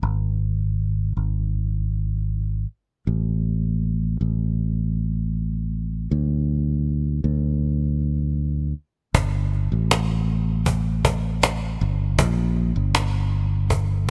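A warm, up-front fingered electric bass carries this emotional, heartfelt pop ballad fragment at 79 BPM in a straight 4/4, tuned to A4 = 441 Hz. A snappy acoustic cajon played with hard hands joins at 9.1 s, all set in a small room with a bright 1980s-style digital sheen and some lossy compression grit.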